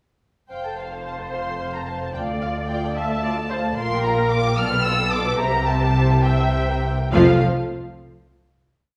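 A lively, cheerful classical-period movement for muted string orchestra in F major, moving at 72 beats per minute in a lilting 6/8, opens at 0.5 seconds with veiled con sordino violins singing the melody over a second violin section's rocking two-note figure and sustained chords, a rich viola counter-melody, and a dark cello bass doubled by the double basses, all bowed with vibrato and wrapped in the reverb of a resonant hall before the music ends on a final chord at 7.1 seconds.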